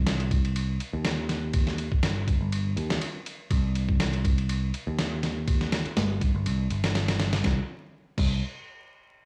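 A dry, gritty hardware recording with vinyl crackle and a small-room ambience frames this energetic, swaggering breakbeat cut from a longer piece, set in C minor at 122 BPM with a light swing on the 16ths. Up front, a compressed, sampler-style soul drum kit, re-recorded in a large room, pairs a thumpy kick and fat snare with ride and crash cymbals, playing from 0.1 to 8.3 seconds. Alongside it, a picked electric bass, bright and growly and also up front, holds the low end between G1 and Eb2.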